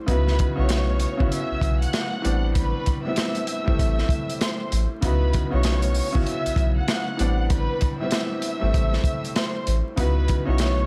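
Vinyl crackle hangs over this dark, reflective boom-bap hip-hop passage, cut from a longer piece and carried by a swung sixteenth-note feel. A crunchy, saturated breakbeat kit of kick, snare, rim click and hi-hat sits up front beside a deep, round dub sub bass, while an intimate, woody upright piano with audible action noise supplies accompaniment and a lush, bowed violin section carries the melody with smooth vibrato. The harmony moves between C#m11 and Am11, a two-chord cycle that plays twice before returning to C#m11 at 10.0 seconds.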